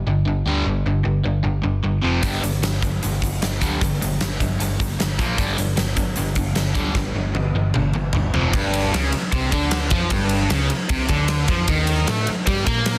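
Heavy and aggressive, this hard rock excerpt drives along at 152 BPM in a straight 4/4, centered on G minor with power chords moving among G5, F5, Bb5 and Eb5. Two overdriven guitars open the riff together from the start: a bright cranked stack guitar with overdrive, and a warm semi-hollow guitar colored by phaser. A dark, round hollow-body short-scale bass, picked and amped, joins almost immediately beneath them. At 2.2 seconds a huge arena drum kit comes in up front, with a punchy kick, a fat snare with soft clipping, bright cymbals across hi-hat and ride, and toms, all in a pumping hall sound. A drum fill from 7.0 seconds leads into a new section at 8.5 seconds, and the dense, heavily limited master keeps the whole band pressed tight within light reverb and a small room ambience.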